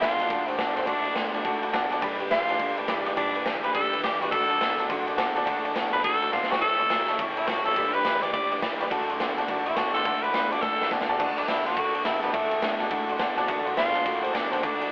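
Rockabilly at a rowdy, rollicking 210 BPM with a swung feel, this excerpt in D major puts a raspy, vibrato-laden tenor saxophone up front on the melody, alongside a saturated garage drum kit with a punchy kick and a pumping stone-room sound. Behind them, a detuned, jangly honky-tonk upright piano drops fills at 1.5 and 12.9 seconds, while a full-bodied picked dreadnought acoustic guitar, a twangy, slightly broken-up electric guitar riff and a woody pizzicato upright bass fill out the background. The band plays live in one room with moderate reverb and a telephone-like tone, and a drum fill at 10.6 seconds leads into the repeat of the main section.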